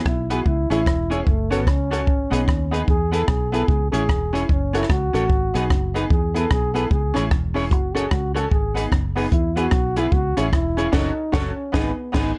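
Cheerful and upbeat, this swung ska clip at 149 BPM cycles through C#m, F#m, G#m and E, with a mellow trombone carrying the solo melody in a smooth pop style full of vibrato and scooped notes. Up front, a compact cocktail drum kit with a punchy kick, high-tuned snare, rim clicks and dark cymbals carries vintage 12-bit sampler grit, while a round, foam-muted fingered electric bass holds the low end. A warm, clean picked electric guitar adds accompaniment and a jangly, detuned honky-tonk upright piano sitting in the background adds stabs, all in light reverb, and the band hits a shared accent from 10.9 seconds to the end of the cut.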